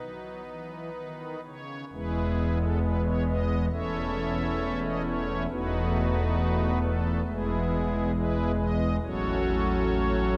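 A pipe organ on its strings celeste stops plays alone and up front, its soft, shimmering tone voiced in a romantic manner from E1 to E5. This reverent, majestic chorale-style classical fragment moves with rubato at 67 BPM in 4/4 and E major, tuned to A4 = 441 Hz, passing from B through E, A/E and B7/E back to E before reaching F#m/A at 9.0 seconds. A cathedral reverb with a 4.1-second tail surrounds the dark production.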